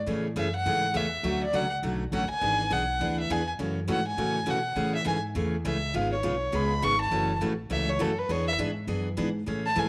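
A moderate echo-chamber reverb and small-room ambience frame this playful, swinging western swing excerpt in A major at 204 BPM, where a thumpy gut-string upright bass with a touch of transformer saturation plucks from the start. A bright, full-bodied dreadnought guitar, picked up front with audible finger squeak, joins at 0.1 seconds, moving through chords like Amaj7, Dmaj7, E7 and F#m7. At 0.4 seconds a close, dark fiddle with light vibrato steps forward to take the bowed solo.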